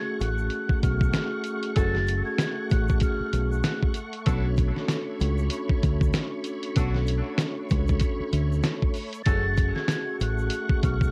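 Boom-bap hip-hop at 96 BPM with a 16th-note swing in F# harmonic minor, reflective and gritty, where a compressed, thumpy sampler-style drum kit and a round, punchy dub bass sit up front under soft-mallet vibraphone, a reedy tonewheel organ turning on a slow rotary speaker, a grainy tube shaker in the background, tape-echoed saxophone stabs from 1.8 to 9.5 seconds, and a breathy flute melody that returns at 9.2 seconds, all moving from F#madd9 to Bm9 and back in a dry home cassette recording cut from a longer piece.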